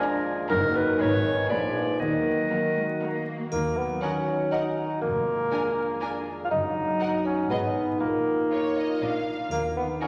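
Wet scoring-stage reverb and a dusting of vinyl crackle surround this sneaky, magical film cue in 3/4, a playful, whimsical fragment of a longer piece led by a woody, soft-mallet folk marimba alongside an expressive studio violin section. For the first few seconds, a bright, vintage clarinet sits up front beside a clear oboe and an airy, mellow baroque flute, while a distant symphonic violin section, a dark, very quiet viola section, a warm bassoon, a roomy French horn section and a ringing, fingerpicked concert harp fill out the harmony. Rich bowed cellos and a close double bass section carry the low end from 0.5 s, joined briefly by a very quiet tuba, and a small-room triangle sounds at 3.5 s and again at 9.5 s.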